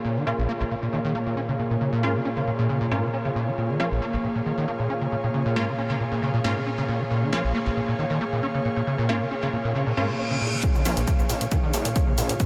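Intense and dark, this driving peak-time techno excerpt opens with a downlifter and a squelchy, distorted acid bass riff up front, over an evolving analog drone, an airy breathy pad and thick rave stabs, all pumping in a dreamy, reverb-soaked space, until a reverse cymbal at 9.9 s ushers in a punchy kick and layered hi-hat and shaker at 10.6 s, joined by a gritty driven synth bass, as a riser climbs through the build-up.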